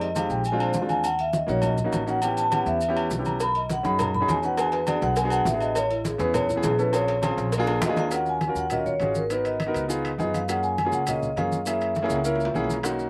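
Fiery and driving, this short Afro-Cuban jazz passage is led by a metallic, airy vibraphone played with medium mallets and its motor off, which solos through the first 8.1 seconds over a deep, up-front concert grand piano touched with slapback echo and a woody, thumpy pizzicato upright bass. Beneath them, soft-handed congas, ringing metal-shell agogo bells and timbales, and grainy, saturated maracas keep a steady percussion bed, while tight, high-tuned cowbell and bongos join at 3.4 seconds. A drum fill marks the turn into the second section at 8.1 seconds, and a piano fill arrives alongside another drum fill near the close, all heard dry in an open-air setting.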